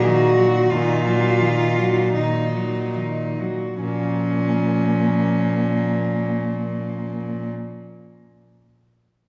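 A clear, nasal bowed cello sits up front on a Bb2 bass, while three softer cellos played sul tasto, all four entering together at 0.0 s, carry a yearning melody with light vibrato and an airy bow, a floating second line above it, and a distant inner accompaniment. This elegiac classical passage in Bb minor moves at a rubato 34-49 BPM in 4/4. It slows over its first 3.8 seconds before settling from Ebm/Bb onto Bbm, heard from further back in a scoring stage whose wet 2.0-second reverb lingers after the cellos stop at 7.5 s in this fragment cut from a longer piece.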